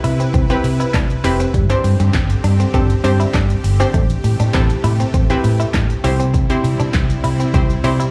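Euphoric and summery, this dance-pop excerpt in C major moves at 100 BPM in a straight 4/4, cycling through Cmaj7, Gsus4, Am7 and C as if heard live through a club's PA. A deep house kit with a deep kick, punchy snare, handclaps, hi-hat and shaker sits up front beside a dark, foam-muted vintage fingered bass, while a detuned sawtooth supersaw pad holds slow-attack chords, both the bass and pad pumping to the sidechain. Over them a warbling analog pluck with a filter sweep, chorus and slapback echo plays accompaniment, and a clean, compressed direct-recorded electric guitar picks a riff through lush chorus and its own slapback echo.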